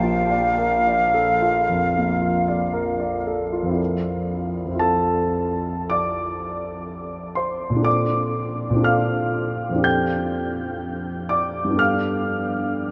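A silver concert flute opens this pastoral, dreamy excerpt, singing an airy, expressive melody around F5 with gentle vibrato and a soft attack, but it falls silent at 3.3 seconds. A dark concert grand piano accompanies from the start and carries on alone to 12.9 seconds, ranging from deep bass notes up into its high register. The impressionist duo sits in F major at a slow, rubato 52-64 BPM in 4/4, tuned to A4 = 442 Hz. Lush harmonies drift from Bbmaj7 through Fmaj7, Bbmaj9 and F69 before settling on G9 near the close. Both instruments sit up front, yet a huge, wet reverb with an 8.6-second tail places them in a vast, echoing space that lends the mellow music a hazy, floating glow.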